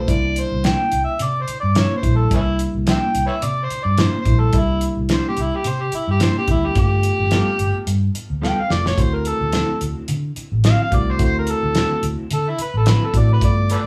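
This laid-back, gritty soul blues excerpt has a straight-eighth feel and is led by an up-front, overdriven amplified harmonica playing a jazz-style solo with light vibrato, tongue slaps and scooped notes, while a second harmonica line sounds only in the first 0.6 seconds. Underneath, a reedy, clean electric piano comps over C9, G9 and D9 chords, a dark, foam-muted fingered bass lays down a round low end, and a dry, damped 70s drum kit with a fat snare and tight kick plays up front, adding a fill around 8.4 seconds. A mellow, clean electric guitar adds background stabs colored by spring reverb and tape echo, and the whole band sounds as if it is playing live together in a moderately ambient studio room.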